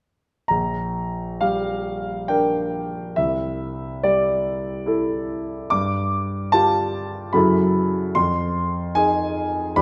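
Moving in a rubato 3/4 at 65-76 BPM, this hazy, luminous excerpt of impressionist solo piano in Bb major features a clear, open concert grand, up front with deep bass across a span from Bb1 to D6, drifting through Bb6, C69, G5, Gbm7 and Fm7 harmonies from 0.5 to 9.8 seconds within a wet recital hall reverb.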